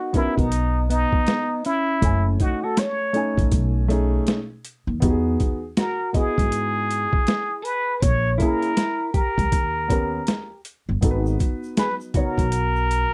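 A dry, close, 1970s-style studio sound frames this mellow, nocturnal hip hop and jazz-hop excerpt, where a plunger-muted trumpet carries the wah-wah melody with scooped notes over a dark grand piano, a clean, fingered electric guitar second line with vibrato, a woody, growly pizzicato upright bass and a gritty, pitched-down, overdriven boom bap drum kit with a thumpy kick and high-tuned snare, while very quiet egg shaker and congas join at 11.0 s.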